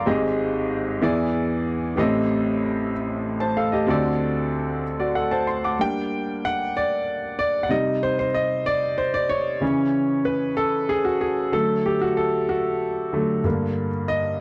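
Gospel in a solemn, soulful mood at a slow 63 BPM in 6/8, played by a clear baby grand piano alone across a span from Ab1 to D6, its action noise audible and its sound intimate and up front. The opening passage moves through Abmaj7, E7, Am7b5 and D7 before settling into G harmonic minor at 5.8 s, where the piano treads through Gm, Cm, C#m7 and D back to Gm by 13.4 s. It has the dry, close sound of a 1970s-style studio in a small room, and this excerpt is cut from a longer piece.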